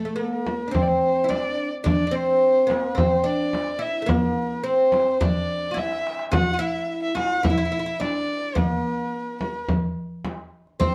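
A straight 4/4 pulse carries this melancholic, hypnotic Arabic maqam ensemble, cut from a longer piece. A bright, woody, fretless oud with doubled strings plays the plectrum-plucked melody up front, while a single dark violin, bowed sul tasto with vibrato, sits close behind on a second line. A deep frame drum enters at 0.5 s and a crisp, small, metal-shelled darbuka follows at 0.8 s from a more distant space, with a drum fill at 5.8 s, all bathed in wet studio reverb and a dusky, warm production.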